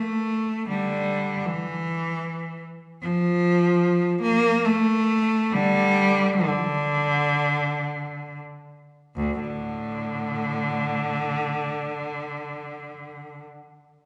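Meditative and mournful, this classical passage for unaccompanied cello unfolds in free time in D minor, an expressive fragment taken from a longer piece. A single bowed cello carries everything, its tone clear and focused, with a singing vibrato, moving through its low and middle register from D2 up to Bb3. The playing slows from about 1.8 seconds to 9.2 seconds, where the opening idea gives way to a brief contrasting section that runs until 12.7 seconds. The cello sits up front in a reverberant recital hall or church, where a long, wet tail hangs around each phrase while the top end stays soft and free of sparkle.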